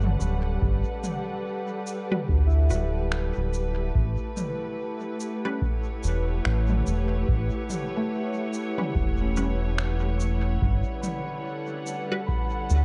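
A swung 72 BPM groove in 4/4 carries this spacious, peaceful ambient dub passage in A mixolydian, where a round, up-front analog bass and a deep electronic kick (from 0.6 s) anchor overdriven finger snaps, shaker and toms with dub echo, while veiled, con sordino strings sustain Gmaj7 and A9 chords, a mellow thumb-plucked Celtic harp ripples arpeggios through tape echo, filtered dub chord stabs with phaser and cassette tape enter at 2.1 s, and a glassy drifting-overtone texture with chorus settles in the background from 4.4 s, all within a dark, warm production cut from a longer piece.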